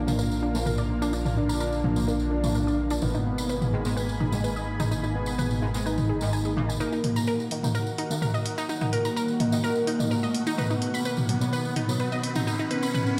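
Played through a big sound system in a bare stone room, this melancholic, hypnotic melodic techno passage at 127 BPM in Eb harmonic minor sets an overdriven, punchy analog drum machine of hi-hats and toms and a jingly tambourine beneath a menacing detuned saw bass, a lush unison pad and a very quiet, warbling drone. A fat analog lead carries the melody with vibrato and digital delay, while a round analog pluck spins arpeggios and a nasal, brassy synth stab with phaser and tape echo is filter-swept in the background through the first 6.8 seconds. From 6.8 seconds the passage builds as a crystalline wavetable pluck joins with its own filter sweep, and a riser enters at 8.7 seconds over chords moving from Ebm to B.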